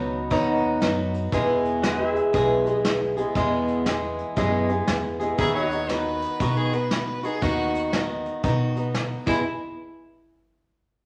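A bright, boxy picked acoustic guitar opens this easygoing, sunny honky-tonk and classic country excerpt at 118 BPM in E major, with swung eighths, joined at once by a twangy pedal steel playing sustained chords with volume swells in the background and a woody, thumpy pizzicato upright bass. A distant, roomy brush kit with a tight kick and medium-tuned snare enters at 0.3 seconds, and a clear, intense bowed fiddle with light vibrato arrives up front at 5.4 seconds as a second line. A drum fill lands at 9.2 seconds, and the whole piece sits in a large studio reverb.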